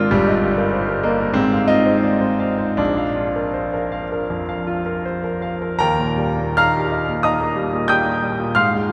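A clear, natural grand piano sits up front in a vast, wet cathedral space, its notes trailing into a reverb that lingers for 4.7 seconds. This is a romantic classical character piece for solo piano in Eb major, tuned slightly low at A4 = 438 Hz, moving in 4/4 at roughly 75-100 BPM with a flexible, rubato feel. The mood is warm and hopeful, the piano spanning from G1 up to G6 across this short cut from a longer work. The harmony opens on Eb over G, passes through Fm7 over Ab and settles on Bb before arriving home on Eb at 5.8 seconds, where a new section begins and carries through to the end at 8.9 seconds.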